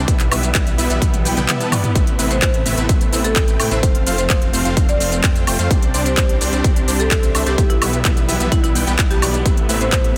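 Anthemic and emotional, this festival progressive house passage pumps a punchy, airy supersaw stab riff and a thick, saturated detuned saw bass over bowed, lush symphonic strings in the background, while an up-front electronic kick and a pop kit of handclaps, crisp hi-hat, shaker, toms and woodblock drive it forward with a drum fill at 1.0 seconds, and a woody rosewood marimba melody with delay joins at 2.3 seconds, all packed into a dense, heavily limited modern master.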